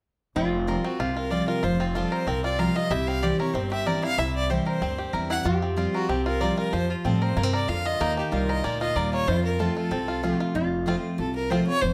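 From 0.4 seconds, a bright, full-bodied picked dreadnought guitar, twangy fingerpicked banjo arpeggios, thumpy gut-string upright bass and a nasal, metallic slide lap resonator guitar on a second line launch a rustic, joyful bluegrass passage at 188 BPM in F mixolydian, joined at 0.8 seconds by a close, up-front fiddle melody with a biting, earthy tone, light vibrato and an airy bow, set in a light reverb as the chords move from Fsus2 through C and Ebadd9 to F.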